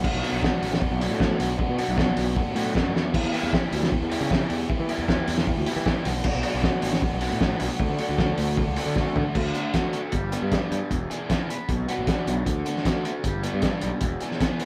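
Indie rock at 155 BPM in a straight 4/4, this excerpt from a longer piece has a jangly, carefree mood and the loose energy of a band playing live together in one room with light reverb. A cloth-damped drum kit sits up front, sounding thuddy and muffled with a fat snare, tight kick, dark cymbals and a gritty, lo-fi saturation, rolling through fills at 3.0 seconds and again just before the shift at 9.4 seconds. Two overdriven guitars carry the riffs: one biting and picked across a range from B2 to G#4, the other raw and garage-toned, reaching from E2 up to B4. Underneath, a fuzz-driven picked electric bass growls from E1 to E3, entering at 0.1 seconds and dropping out at 14.2 seconds. The harmony opens on B minor and E minor before moving to D, then the second section cycles more quickly through G, E7, B minor and D.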